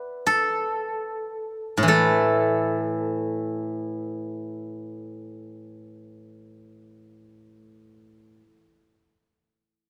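A steel-string zither, played with fingerpicks, carries this brief passage of Chinese traditional music entirely on its own, its bright, silvery tone ringing up front. The playing unfolds in free time with an elegant, flowing mood, ranging from A2 up to E5. In the opening 1.9 seconds the pace slows down before the music moves into a new section that runs to 6.7 seconds. The zither continues until 8.5 seconds, where this portion of a longer piece is cut off. A moderate recital hall reverb surrounds the acoustic instrument, letting each plucked note hang in the space.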